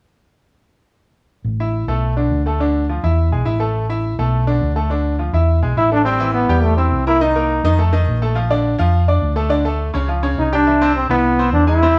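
A punchy, up-front trombone carries the melody in short solo statements from 5.8 to 7.8 seconds and again from 10.4 seconds to the end, its smooth top and light vibrato giving it a pop-style sheen. This is a driving, danceable Latin track in A minor at a brisk 208 BPM in straight 4/4, cut from a longer piece. Beneath it, a dark, round hollow-body short-scale electric bass, played fingered and amped, enters at 1.4 seconds and anchors the low end. A brilliant, polished grand piano joins at 1.6 seconds as accompaniment, its short sustain keeping the chords crisp and present. The opening section cycles through A5, Bm7, Dm and E, then the second section from 6.1 seconds moves through richer colours such as Am9, Cm7, F7 and Bbmaj7 before reaching Cmaj7. Light reverb gives the close, up-front parts a touch of space.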